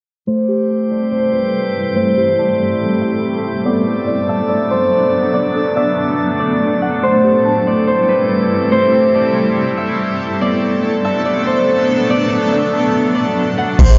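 A dark, hazy mix sits in a moderate digital room, its top end rolled off and the whole bed passing through a filter sweep from 0.3 to 13.8 seconds. This is ethereal, melancholic cloud-rap in A dorian at 142 BPM with a half-time feel, drifting between Am7 and Bm7. A ringing, fingerpicked concert harp carries the melody from the start. Beneath it, a cloudy granular pad holds sustained chords with sidechain pumping, and muted, felt-like synth keys spin intimate arpeggios through chorus, phaser and delay. A glassy texture of drifting overtones floats quietly behind them. Only at 13.8 seconds do a deep, round 808-style bass and a smooth R&B kit arrive up front, the kit's soft kick, hi-hat and crash landing just as this cut from a longer piece ends.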